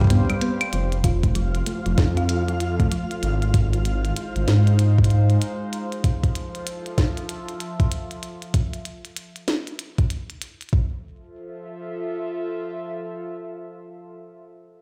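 A warbling, lo-fi tape-like pad, a round, tine-like thumb-piano pluck with chorus and tape echo, a deep, detuned saw bass and a soft, overdriven electronic kick open this wistful, playful IDM excerpt, joined at once by a glitchy kit of tiny snare, clicky hats and claves through a brief fill. The pluck's arpeggios stop at 3.1 seconds and the rumbling bass at 5.4, while a flickering, grainy texture with sidechain pumping sits faintly under the swung groove. Once the drums drop out near 10.9 seconds, the nostalgic, phased pad holds its sustained chords alone, the whole mix sounding as if played on a big system in a bare room with large studio reverb.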